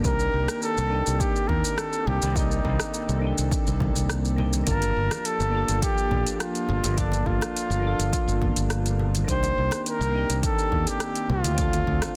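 A straight 4/4 groove at 104 BPM carries this relaxed, warm sunset chillout excerpt, with a punchy overdriven electronic kick and a deep house kit of metallic hats, rim click and shaker under a bright, up-front fingered electric bass, soft round synth keys with chorus, tremolo, tape echo and a filter sweep, a breathy, warbling pad in the background, very quiet ringing congas entering at 1.5 seconds, and a mellow, close-miked flugelhorn with light vibrato and tape echo leading the melody over Cm7, Gm7 and Dm7 in a dense, heavily limited mix with light reverb.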